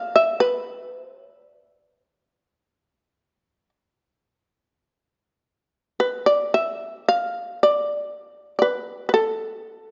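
Rubato and unhurried, this Japanese traditional passage drifts around 48-59 BPM in a loose 4/4, its pulse bending freely across roughly ten seconds cut from a longer piece. A lone acoustic shamisen carries everything, plucked with a plectrum in the D kumoi scale and staying between A4 and F5. Its tone is percussive and buzzing, fretless and powerful, sitting up front in the sound. Around 4.9 seconds the music turns to a second idea, keeping the same austere, still mood. A moderate recital-hall reverb with a 1.8-second tail surrounds the instrument, and the top end is rounded off, giving the recording a sober air.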